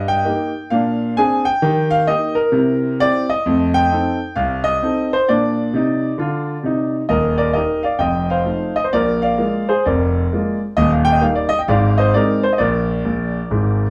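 A clear, open concert grand piano plays solo stride jazz with a swung, playful and exuberant feel, its deep bass reaching down to Eb1 under a short club reverb that places the listener further back in the room, before a brief fill closes this short cut from a longer piece at 13.0 seconds.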